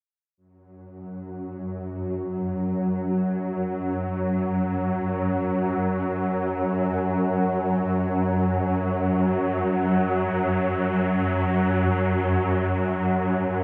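Drenched in a huge, cavernous reverb with an 8.0-second tail, this ominous ambient excerpt in free time, tuned to A4 = 442 Hz, features a lone swarming drone that enters at 1.0 s and sits up front, its detuned, granular sine tones swelling in on a slow attack and sustaining tensely between F#2 and F#3 with reverb and delay until 13.6 s.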